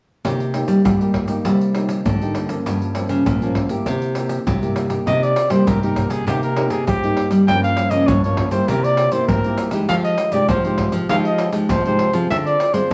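Yearning and nostalgic, this excerpt of samba and choro in C minor moves at 100 BPM, with a fingerpicked classical nylon-string guitar comping through minor-seventh and half-diminished changes over a second full-bodied nylon-string guitar carrying the bass line with audible finger squeak, while a band-limited, vintage-sounding percussion bed of egg shaker, deep surdo and hard-handed pandeiro keeps time before a breathy, up-front jazz trumpet with vibrato enters at 5.1 seconds to sing the solo melody in a moderate large-studio reverb.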